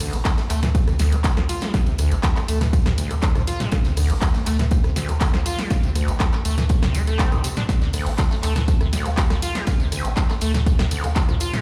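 Hypnotic and gritty, this excerpt of acid house at 121 BPM sits on a D minor chord, driven by a squelchy, resonant sawtooth acid riff with overdrive, lush chorus, digital delay and sidechain pumping over a round, deep analog bass that also pumps, while an up-front punchy electronic kick entering at 0.3 seconds, a tape-warm analog drum machine with handclaps, hi-hat, ride, rim click, snare and toms, a very quiet tight acoustic kit and a jingly, bright tambourine in the background fill out the groove, all heard as if played on a big sound system in a bare room with large studio reverb.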